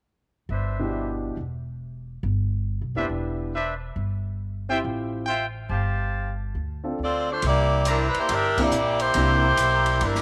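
Brassy and swinging, this big band jazz excerpt moves at 139 BPM in 4/4 with a strong swing feel, set in C major. A warm trumpet section punches out smooth-topped stabs from 0.5 seconds, while a woody, thumpy pizzicato upright bass sits up front beneath it and an intimate concert grand piano with deep bass, long sustain and audible action noise fills in the accompaniment. The harmony moves from Cmaj9 through suspended G chords before landing on C9, where the second section begins at 7.4 seconds. Just before that, a bright saxophone section with vibrato takes the melody at 7.0 seconds, sitting prominently in the mix, and an open acoustic jazz drum kit joins at 7.4 seconds with dark cymbals, a medium-tuned snare and a boomy kick in an airy small room. The full band hits an accent at 8.5 seconds, all of it carried by a moderate spring reverb.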